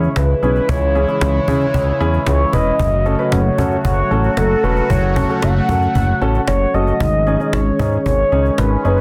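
A dense, heavily limited modern master with light reverb and a small-room ambience gives this short synth-pop excerpt a close, compact sound and a nocturnal yet driving mood in a straight 4/4 feel. A round, horn-like synth lead carries the melody with a soft attack, vibrato, a filter sweep, chorus and tape echo. A dark, mellow concert grand piano supplies accompaniment beneath it, while a bright, evolving sawtooth pad holds sustained chords with a slow attack, a filter swell, a moving notch and chorus. A fat, detuned analog bass with a saturated sawtooth edge and fast attack sits up front, and a snappy acoustic cajon, played with hard hands and recorded close, keeps the pulse. All five parts play from start to finish across 9.0 seconds as the harmony moves from C#m to F#m at 2.8 seconds and lands on G#sus4 at 7.0 seconds.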